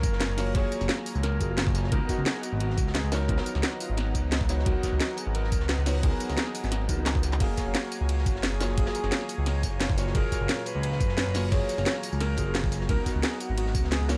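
From the first second, this lush, dreamy liquid drum and bass cut from a longer piece rolls at 175 BPM in F# major, with a smooth, up-front synth bass and a felt-muted upright piano laying down a soft, intimate accompaniment whose action noise is audible beneath a vintage 12-bit sampler grit. A breathy alto saxophone carries the melody in a dark, subtoned jazz style, sounding distant and roomy with scooped notes and a trailing dub echo. Behind it, a detuned analog pad holds slow-blooming sustained chords with chorus, the same sampler grit and a sidechain pumping, while the harmony moves between F#maj9 and C#13sus4. The rhythm stacks a knocking electronic kick, an up-front electronic kit with a cracking snare, bright hats, handclaps, tambourine, ride and crash, and a gritty, saturated acoustic breakbeat kit tucked in the background with high-pass filtering on its hats, snare, cymbals and room. 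A brief drum fill arrives at 7.1 seconds, and the kick drops out at 13.8 seconds just before the close, all set in a studio reverb.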